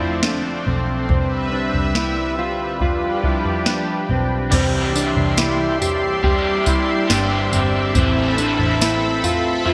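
A bright, 1980s-style digital sheen and a moderate plate reverb give this floating, ethereal dream pop excerpt its glossy, spacious sound. At a straight 70 BPM in 4/4 and C major, a lush, warbling sawtooth pad with a detuned unison and chorus sits up front, holding slow-blooming chords that move from F6 through Cmaj9 and G7. Beneath it, a mellow, dark electric guitar plays fingered arpeggios through lush chorus and digital delay. A round, foam-muted picked bass and a soft analog rhythm box with a deep kick, crisp snare, tambourine, toms, crash cymbal and gated reverb hold the groove. At 4.5 seconds the harmony shifts to Cadd9 and later Amadd9 as a crunchy, double-tracked overdriven guitar enters with harmonic tremolo and chorus, joined by a very quiet, hollow and nasal square-wave pluck adding a bouncy shimmer up high.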